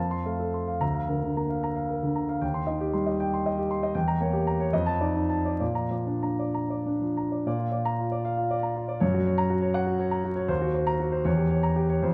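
Passionate and lyrical, this short cut from a longer romantic character piece for solo piano moves in a flowing 6/8 at roughly 63 to 83 dotted-quarter beats per minute, with a free, rubato feel. A concert grand carries everything alone across its 12.1 seconds, ranging from D2 up to C6 with a deep bass, an open character and an up-front presence. The harmony settles in B-flat major, passing from F through Bb/D and Cm/Eb to a tense Edim7 before easing onto F6 and Bb. The opening phrase begins again at 7.5 seconds, this time turning toward a surprising Gb chord and then Cm7b5/Eb, closing on another Edim7. A large, wet studio reverb lends the sound a spacious bloom, and a vinyl crackle gives the recording a worn, nostalgic patina.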